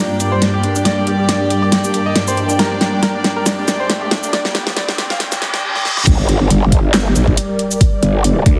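A swung, half-time 4/4 pulse at 138 BPM drives this aggressive, menacing heavy wobble dubstep cut in G minor, where a brilliant grand piano melody with digital delay, a morphing wavetable pad with ensemble chorus and sidechain pumping, earthy bowed chamber strings and a dubstep drum kit with a huge snare and metallic hats build under a filter sweep and a background riser, reverse cymbal and sub drop until the drop at 6.1 seconds unleashes a detuned, wobbling, overdriven growl bass and an up-front knocking electronic kick, set in a lush hall reverb with a heavily compressed radio sound.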